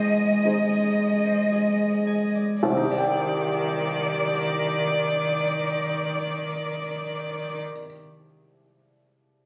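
This fragile, melancholic neoclassical excerpt for piano and strings opens with all four parts together, in a rubato 4/4 that slows over the first bars as the harmony moves from Ab/C to Cmadd9. A dark, woody violin carries the melody up front, played sul tasto with vibrato and a smooth top. Close beside it, a single cello sings a second line, bowed sul tasto with light vibrato, a soft attack and an airy bow. A felt-muted upright piano gives mellow, intimate accompaniment with a vintage, thin-felt tone and short sustain. A concert harp ripples fingerpicked, ringing arpeggios in the background, touched by a slapback echo, until it stops at 6.2 seconds. The strings end at 7.6 seconds, leaving the piano alone until 9.5 seconds, all heard in a moderate recital-hall reverb with club reverb and the casual sound of a phone recording in the room.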